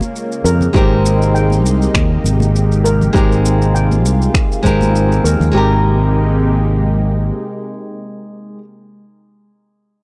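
Sunset chillout in Ab major at 100 BPM with a light swing on the 16ths, sunny and warm, cut from a longer piece. A lush, detuned sawtooth pad with chorus and phaser holds sustained chords, while overdriven electronic shaker and finger snaps and very quiet hard-hand congas drop out at 5.5 s. A deep, overdriven electronic kick punches under a growly, up-front fretless bass, shimmering steel pan arpeggios float through a low-pass filter and analog delay, and a warm fingerpicked flamenco guitar with its own delay enters at 0.7 s, all in a dry, gritty hardware recording with transformer saturation and cassette tape character.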